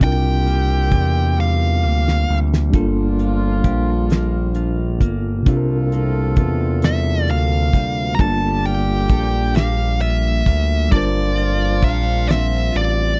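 Slow, sultry late-night R&B in a straight six-eight, cut from a longer piece and captured as a dry, close 1970s-style studio recording: a damped acoustic drum kit with a fat snare and tight kick sits up front and plays a fill from 1.4 to 2.7 seconds, a smooth, nasal, detuned synth bass with vibrato anchors the low end, a mellow tine electric piano and a light-vibrato horn section doubled in octaves supply accompaniment and stabs, a clean, compressed electric guitar with lush chorus adds a second line in the background, and a dark, high-gain distorted lead guitar carries the melody at the opening and again from 6.9 seconds over suspended and minor-ninth chords.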